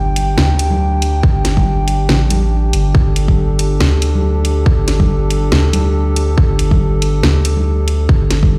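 A tight, layered electronic kick drum sits up front from 1.2 seconds, anchoring this dark, heavy deep dubstep excerpt at 140 BPM in 4/4 with a half-time feel and a 57% swing on the sixteenths. Beneath it, a soft dub sub bass, round and deep with a triangle and square-wave tone, holds sustained low notes with a fast attack and shares the front of the mix. A garage drum kit adds hi-hat and a cracking snare, while congas with soft hands and a ringing, medium-tuned acoustic character sit in the background, carried by dub echo. Over the top, a moody analog pad built from detuned square, sawtooth and triangle waves with a sub octave sustains nasal chords on a G5 harmony, swelling in with a slow attack and fading with a long release through chorus. Light digital ambience and the reverb of a bare stone room, as if played on a big sound system, give the piece a stony, brooding space.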